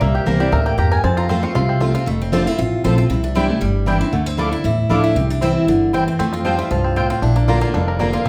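A round, double-strung mandolin takes a solo over the first 2.1 seconds of this joyful, virtuosic bluegrass tune in F major, racing along at 233 BPM in a straight 4/4, then keeps up its stabs while a twangy, percussive banjo played with fingerpicks carries the melody at the start and returns at 6.2 seconds. From 1.9 seconds a full-bodied dreadnought guitar picks a second melody up front, beside a bright concert guitar whose picked accompaniment carries finger squeak, while a woody, growly pizzicato upright bass anchors the low end. A wet large-studio reverb places the music further back in the room, and the passage is cut from a longer piece.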